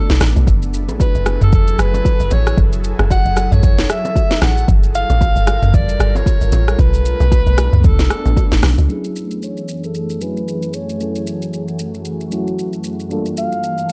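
A swung sixteenth-note amapiano groove rides on an electronic afro-pop kit with a deep kick, sharp snare, crisp hats, rim clicks, shaker and toms, while a round, percussive log drum bass sits dark and up front and bright bongos and congas patter softly in the background. Over an airy, ethereal pad that pumps against the beat, a distant, roomy alto saxophone carries a soulful lead with vibrato and scooped notes, and the hypnotic mood is held together by a dry, gritty cassette sound. At 8.9 seconds the log drum bass and hand percussion drop away as a mellow, warbling FM electric piano enters with vintage chorus and tremolo, the harmony cycling through lush minor ninth chords.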